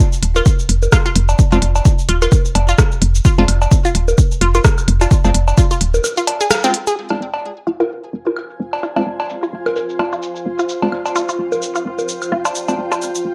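A swung, sparse 4/4 groove anchors this quirky minimal techno excerpt, built on a clicky drum kit of filtered hi-hat, rim click and shaker that sounds re-recorded in a small room. A punchy, overdriven electronic kick sits up front until it drops out at 5.7 seconds, while a woody, round FM bass with a dark tone pumps under sidechain and holds the low end throughout. Above it, a juicy, squelchy blip pluck riff with ring modulation rides a phaser and digital delay, joined by layered bongos, woodblock and cowbell that carry tape echo and the sense of a large room. Crisp, detuned wavetable chord stabs with a moving notch drift in from 1.5 seconds, also treated with tape echo. After a band accent at 6.5 seconds, the second half brings filter sweeps on the drums and the pluck, and a cloudy, blurred granular pad with its own reverb blooms in at 8.6 seconds, all within a light digital ambience.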